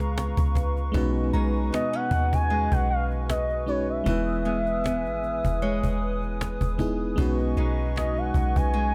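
Bathed in digital ambience, this dreamy, romantic contemporary R&B excerpt sets a smooth, gliding sawtooth lead with vibrato, chorus and tape echo over a lush FM electric piano shimmering with chorus and tremolo, a hollow, flute-like pad, and woody fingerpicked arpeggios on a nylon-string guitar with old strings. A round, deep 808-style bass sits up front beneath snappy, close cajon played with soft hands, all moving through gently swung sixteenths. From 1.3 seconds a crystalline FM bell glints in the background as the harmony drifts from C#7 through B69 to Emaj7 and back to B69.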